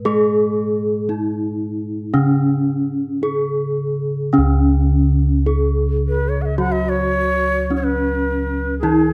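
Javanese gamelan in a straight, slow 4/4, serene and shimmering, heard in a short excerpt taken from a longer piece. A dry, up-front bronze metallophone struck with a wooden mallet carries the melody, its paired tuning producing shimmering beats, while a brighter metallophone played with a horn mallet accompanies lower down and mellow, dark bossed gongs under padded beaters supply a round, soft bass. From 6.1 seconds a breathy bansuri joins with a second line, its straight, slightly unsteady tone close-miked in a detailed recording with little reverb.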